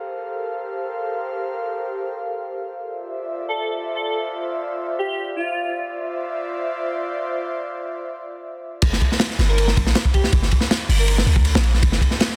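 Drum and bass with a jungle edge, this dark, raw excerpt at 160 BPM in G dorian opens with a breathy, detuned pad holding chorused Gm11 and Dm9 chords under a filter sweep, while a dreamy lead with vibrato, 12-bit sampler grit and dub echo drifts in at 3.5 seconds. After a short break, the drop lands at 8.8 seconds as a crunchy, saturated breakbeat kit with dark cymbals and a tight kick arrives up front alongside a deep, boomy 808-style sine bass on Gm. The lead returns briefly over the drums, all set in a small, lightly reverberant room with a dense, heavily limited master.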